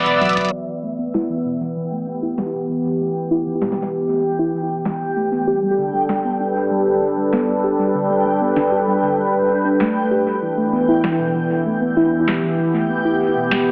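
An echo-heavy, low-passed mix with the narrow sound of AM radio and a wet digital plate frames this cerebral, intricate IDM excerpt at 97 BPM in E minor, where an up-front sawtooth pad, detuned and gritty with vintage 12-bit sampler character, sustains chords from Bm7 through Em and Gadd9, a dark, ringing harp-like pluck spins arpeggios under a filter sweep from 0.5 s, a reversed, granular texture glimmers high above, and a booming analog drum machine with crisp snare and metallic hats trails dub echo, after a brief opening drum fill joined by round sine sub bass and a very quiet deep kick, both gone by 0.5 s.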